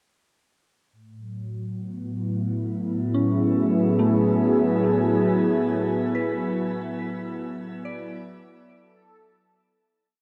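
Bathed in a wet shimmer reverb with a 6.9-second tail, this complete ambient piece feels serene and weightless, drifting at 53 BPM in a straight 4/4 in A major. A warm analog pad enters at 0.9 s, its detuned sawtooth tone smooth and bright, with a soft attack, long release and chorus. The pad sits up front, its chords changing slowly from Amaj13 to F#m7/A and then Bm7, while a filter sweep and a moving notch color its sustain. At 3.1 s a gentle FM synth bell joins with pure, vintage, warbling arpeggios, each note striking quickly and then decaying through chorus, phaser and a diffuse ambient delay. Two slow bell loops of unequal length drift against each other alongside the pad until the fade-out that begins at 5.4 s closes the piece.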